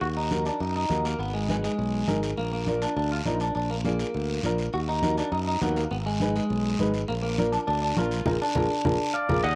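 Fiery, driving cumbia at 204 BPM, cycling through Ebm, Abm and Bb with a twangy, compressed clean electric guitar carrying the melody through spring reverb and cassette-tape grit over a growly, punchy fingered bass, a woody, boxy upright piano, soft-handed congas and a raspy guiro, all in a snug booth with a home-cassette sound, until a band accent from 8.3 seconds and a drum fill from 8.6 seconds bring in a distant vibrato trumpet at 9.1 seconds and a ringing cowbell at 9.4 seconds just as this brief cut ends.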